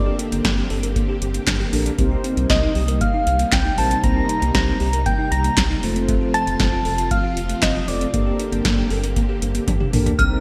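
Driving yet melancholic, this synth-pop excerpt moves in a straight four-four over a chord cycle of Gmadd9, Cm7 and F before returning to Gmadd9. A soft struck synth lead carries the melody with a round, gentle, keys-like FM tone, softened by chorus and delay, while a mellow synth brass part fills in brassy, full-bodied accompaniment beneath it. A string machine voiced as violas holds sustained chords with a vintage, slow-attack sheen and ensemble chorus, and a bell-like tine electric piano traces clean arpeggios with delay in the background. The rubbery square bass bounces with a hollow, resonant filter pluck, and the electro analog drum machine sits up front with a deep kick, punchy snare, metallic hats, handclaps and toms, dry and tape-tinged with gated reverb, closing on a fill at 9.7 seconds. At 10.2 seconds a synth chime rings out a single inharmonic, warbling high note, all within a lush hall reverb and bright 1980s-style digital production.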